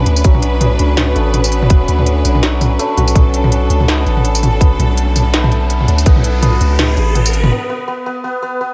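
Spacious and heavy, this short cut from a longer half-time drum and bass track moves at 165 BPM in B minor, opening on a Bmadd9 chord with a swung sixteenth-note feel. A hammered santur spins shimmering, ringing arpeggios through a low-pass filter and tape echo, with a filter sweep running across the whole build-up, while a bright, distant string section holds lush, bowed chords with biting vibrato that pump against the sidechain. Underneath, a deep, mellow 808-style bass sits up front with long sine tones that decay after a fast attack, joined by a tight, layered electronic kick and an industrial kit whose clanging snare, smooth hats, tambourine and toms sound re-recorded in a small room. An electronic riser enters at 4.8 seconds to push the build-up higher. The electronic kick falls away at 6.1 seconds, and at 7.5 seconds the strings, bass, kit and riser drop out, leaving the santur to carry the break alone in light reverb.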